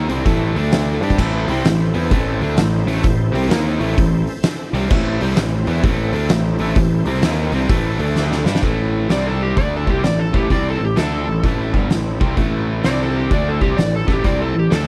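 The sound is dry and close, a gritty, heavy slice of blues rock and southern rock swinging at 129 BPM in A minor, with a pumping stone-room drum kit of punchy kick, fat snare and dark cymbals up front beside a growly, fuzz-drenched picked bass. A cranked, double-tracked stack guitar drives the riff with bright overdrive, while a very quiet tonewheel organ holds thick sustained chords through a rotary speaker with chorus vibrato. After a drum fill at 8.2 seconds, an overdriven slide guitar played with fingerpicks enters at 9.1 seconds with a warm melody over the Am and C5 changes.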